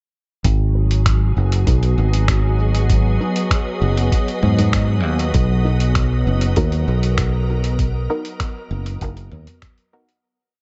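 A growly, up-front fingered electric bass carries this short, meditative and hazy ambient dub piece at 98 BPM in G# minor, set over a muffled, thumpy electronic kick. A sparse lo-fi sampler-style kit of overdriven finger snaps, closed hi-hat and low toms is soaked in dub echo, while a warbling, organ-like pad with ensemble chorus holds slowly shifting G#m7 and Bmaj7 chords. A muted sawtooth chord stab with chorus and dub echo sits in the background under a filter sweep, all in a light digital ambience that fades out from 7.0 to 10.2 seconds.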